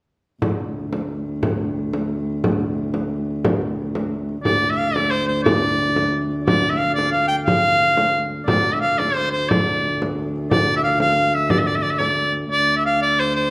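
A steady 6/8 metre drives this mysterious, ancient-sounding medieval dance, cut from a longer piece: a dark, woody viola da gamba holds a biting, ringing low drone with light vibrato from 0.4 s, a small frame drum played with soft hands sounds alongside it from the same moment until 12.2 s, and at 4.4 s a bright, up-front shawm enters with a folk-style solo full of scooped notes, the whole ensemble set in a reverberant recital hall.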